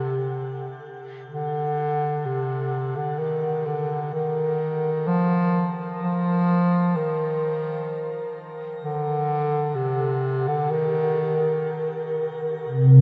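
A bass clarinet opens this dark, ominous ambient excerpt, carrying the melody alone from 0.0 to 12.2 seconds in a low register between C3 and F3. Its tone is warm and vintage, played up front in a classical solo style, and it is bathed in shimmer reverb and a diffuse ambient delay. The tempo sits at a slow 64 BPM in a straight 4/4, with the tuning set at A4 = 445 Hz. At 12.7 seconds a sweeping, resonant sawtooth pad takes over on a sustained C3, its detuned, bright and evolving sound thickened by lush chorus. The whole piece sits in a huge, wet ambient reverb with a long 9.4-second decay, giving the brooding passage a cavernous sense of space.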